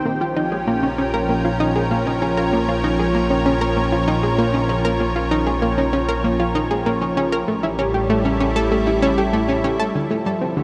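A round, bright analog pluck carries a chorused, delayed riff up front from 0.1 seconds in this excerpt of expansive, hypnotic, sequencer-driven space music at 97 BPM in Bb dorian. A lush, detuned unison pad holds sustained chords over Bbm, A7 and Dm, while a fat, wave-folded analog bass with a filter sweep sits beneath. A mellow, bubbling texture of resonant random filter steps lingers in the background until 10.0 seconds, and a huge ambient reverb with an 8.9-second tail makes the whole mix drench in space.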